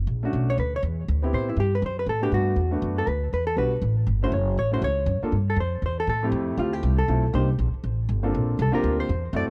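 Playful and relaxed, this short excerpt from a longer small-group swing and bop jazz piece moves at a brisk 240 BPM in 4/4 with a swung eighth-note feel. A woody, growly upright bass plucked on steel strings starts things off, joined at 0.2 seconds by a baby grand piano with a natural tone and short sustain comping chords such as Bm9, Gmaj7 and a rootless Dmaj7, while a dark, clean, picked hollow-body electric guitar carries the melody from 0.5 seconds. All three sit up front in a dry, close 1970s-style studio sound, and the harmony shifts at 6.3 seconds into a new section built on Fmaj7, Cm7 and Bb69.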